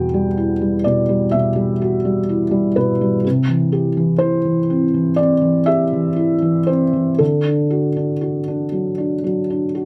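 Neoclassical minimalist piano, intimate and wistful, unfolds at a slow, rubato 58-63 BPM as a solo felt-muted upright piano, up front with a thick, dark, mellow tone, drifts from E minor add9 through C to D in this 9.8-second excerpt, captured by close, detailed microphones in a dry, near-reverbless sound.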